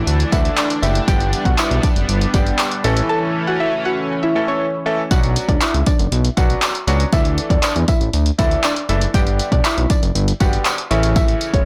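A shimmering chorused pulse-width pad and fat, detuned analog bass pump together from the start of this summery, euphoric dance-pop excerpt in D major at 119 BPM, joined by a punchy, tape-warm drum machine of kick, hi-hat and handclaps, a jingly tambourine in the background, a bright grand piano with audible action noise, and a soft, round pluck melody with chorus and dub echo, the pad dropping out at 5.1 seconds while the rest drives on through an overdriven, blown-out mix with light digital reverb.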